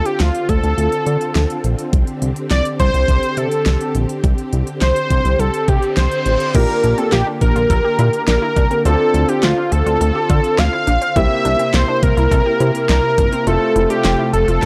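A dry, gritty recording with transformer saturation carries this nocturnal, melancholic synth-pop excerpt at 104 BPM in a straight 4/4, where a thick, detuned sawtooth unison lead with vibrato and tape echo sings the melody up front over a glossy, nasal chorused synth bass with tube saturation, a layered electronic pop drum kit of knocking kick, fat snare, crisp hats, handclaps and crash, and vintage string-machine violas holding evolving chords through ensemble chorus. After a reverse cymbal rises in the background at 5.7 seconds, a clear baby grand piano and a lush, wave-folded unison pluck playing arpeggios through tape echo join at 6.5 seconds behind the lead. The harmony moves from Dm7 and Csus2 to Bb6 and C7 before landing on F.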